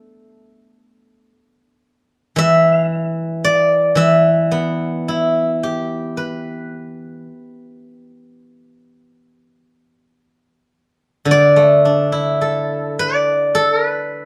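Elegant and contemplative, this short fragment of traditional Chinese solo plucked-string music unfolds in a free, rubato 4/4 at roughly 51-58 BPM in the E yu mode. A steel-string zither, played with fingerpicks, carries everything alone from 0.0 to 14.3 seconds across a range from D3 to E5, its silvery, ringing tone sitting up front in a moderate studio ambience. The opening passage gives way to a new section at 11.3 seconds just before the cut.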